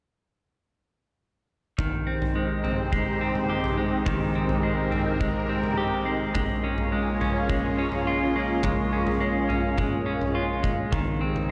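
The recording sits in a wet echo chamber with a studio ambience, giving the whole mix a soaked, echo-heavy sheen. This dreamy, blissful dream pop fragment moves at 105 BPM in a straight 4/4 in Ab major, and its drums and clean electric guitar arrive together at 1.8 s. An oversized, low-tuned acoustic kit of kick drum and toms fills a big, pumping room, its boomy kick saturated and gritty near the front. The picked guitar plays arpeggios with a subtle chorus and dub echo, while a lush, thick pad of detuned sawtooth and square waves with a sub octave fades in at 2.0 s, holding bright chords through chorus and phaser. The harmony drifts from Abmaj7 to Bbm7 and returns to Abmaj7 at 10.9 s, with all three parts carrying on to the end.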